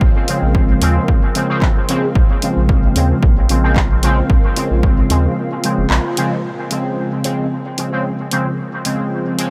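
Hazy and nocturnal, this dub techno fragment sets juicy, detuned polysynth stabs up front, their resonant filter sweeping through chorus, phaser, sidechain pumping and dub echo, over a blurred granular cloud pad that pumps softly in the background. A punchy electronic kick re-recorded in a large room and a smooth, clean sine sub bass with sidechain pumping anchor the swung groove, while a deep house kit adds handclaps and dark hi-hats trailed by dub echo. The kick stops at 4.9 seconds, a break follows from 5.4 seconds, and the sub bass stops at 6.0 seconds, leaving the stabs, pad and kit under light digital ambience.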